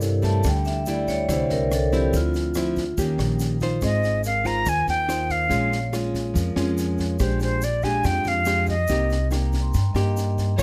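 Close and lightly reverberant, this intimate, wistful bossa nova excerpt moves at 142 BPM in a straight 4/4, cut from a longer piece. Fingerpicked nylon-string guitar sits up front with an upright bass, pizzicato and woody, beneath it, while a compact cocktail drum kit adds a punchy kick, rim clicks and a high-tuned snare, and a grainy egg shaker ticks in the background. For the first 3.8 seconds the vibraphone, played with medium hard mallets and its motor off, takes a metallic, ringing solo over chords moving from Fmaj9/D through Dm9 to Eb7. At 3.8 seconds a reedy concert flute enters with the melody, airy and straight-toned with tongued notes, over Ab6, Bbm7, Bb6 and Cm7 harmony until 9.3 seconds. At 10.6 seconds, as the excerpt ends, a dark symphonic violin section arrives on a single lush, bowed note with vibrato and portamento.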